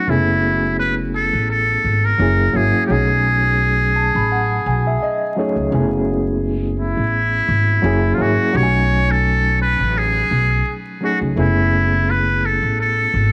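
A home cassette recording with vinyl crackle and a small room's modest reverb frames this melancholic, reflective hip hop cut at 85 BPM, lightly swung in F# dorian over F#m11, F#9 and B13 chords. A buzzy, breathy trumpet with a metal mute sits up front with a whispered, intimate jazz-style melody through cassette tape and tape echo, while a reedy electric piano with fast tremolo and plate reverb comps beneath and adds a fill from 3.6 to 5.7 seconds. A woody, thumpy pizzicato upright bass, also up front with transformer saturation, anchors the low end from 0.1 seconds.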